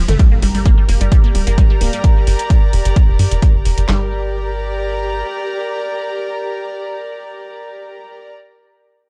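A squelchy, resonant blip pluck riff and a tight sawtooth sequencer bass with tube saturation open this driving, industrial peak-time techno excerpt at 130 BPM in G minor, both pumping against the sidechain, while a punchy kick, cracking snare and handclaps sit up front with metallic hats and toms from a small-room electronic kit. A very quiet electronic impact runs from 0.3 to 2.0 seconds as a filter sweep moves across the bass, and a distant, earthy chamber string section with light vibrato enters at 0.2 seconds, its bowed sound carrying on through 8.3 seconds. The sound is dry and gritty, like a hardware recording in a digital ambience, with the pluck colored by phaser, subtle chorus and analog delay.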